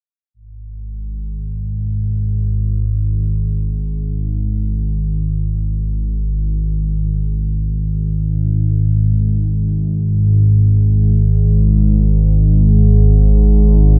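A warbling, detuned analog drone sits up front in an echo-heavy mix, its slow-attack tones blurred by chorus and tape echo and set in a moderate spring reverb. This ambient piece moves in free time with a vast, ominous mood, the solo drone entering at 0.6 seconds and sustaining low between G#1 and G#2 as its wave-folded, pulse-width-modulated timbre evolves. Cut from a longer piece, this short section holds on that single sustained, vintage-toned voice.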